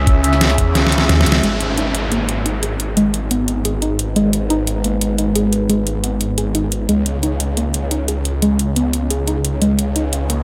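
A straight 4/4 pulse drives this dark, technical drum and bass cut from a longer piece, with a futuristic, mechanical mood. Up front, a dubstep kit pairs a deep snare with metallic hats, and a knocking electronic kick punches through only at the start before dropping out as a drum fill and band accent lead into the main passage at 1.4 seconds. Beneath it, a snarling, growling saw bass sits up front, detuned and distorted with a moving notch and sidechain pumping, while a pulsing, saturated wobble bass flashes in for a brief moment. A deep, moody ambient pad holds sustained chords moving from C#m to G#m and back, its slow attack and long release carrying chorus, reverb, pumping and a filter sweep. Over this, a soft, round pluck spins gentle, wave-folded arpeggios through chorus and digital delay, with a downlifter and riser adding electronic sweeps, all set in a lush hall ambience.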